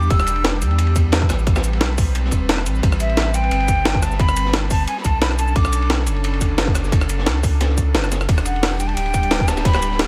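A breathy, bright jazz flute with dub echo carries the melody in short phrases between E5 and E6, heard at 0.0, 3.0 and 8.5 seconds, over an airy, detuned pad that sustains chords from Em7 through Am9 and Bm9 in E minor. This is a dreamy, rolling liquid drum and bass excerpt at 176 BPM with a light swing, anchored by a round, up-front sine sub bass and a tight, layered electronic kick. A gritty, high-tuned sampler-style breakbeat kit with cabasa, hi-hat, ride, rim click and snare sits up front, while a second, darker breakbeat kit with a rolled-off top murmurs in the background of a small room.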